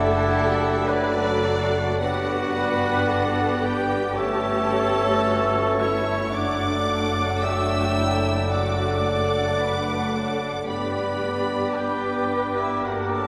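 Flowing in a rubato 4/4, this slow, lyrical romantic orchestral movement opens with a close, lush violin section singing the melody with smooth vibrato, while an airy, distant flute, a dark clarinet, a second violin section gliding with portamento and a very quiet oboe weave second lines in the background. A mellow bassoon and a focused viola section accompany, a roomy French horn section holds sustained chords, and a clear trumpet adds distant stabs, all over a bass of an expressive chamber cello section and a soft-attacked double bass section. The chords move from D/F# through Gmaj7 and A7/G, back to D/F# and on to G, and the whole 13.3-second passage, cut from a longer piece, sits in a wet cathedral reverb.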